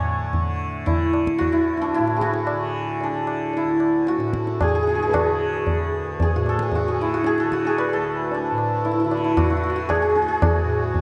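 A shimmering, hammered santur sings the melody up front over a softly plucked, buzzing tanpura drone in D raga yaman, joined at 0.3 seconds by a low-tuned, close and dry tabla in this radiant, meditative Hindustani classical passage at 113 BPM in a straight 5/4, cut from a longer piece and set in a lush hall reverb that leaves the mix dreamy.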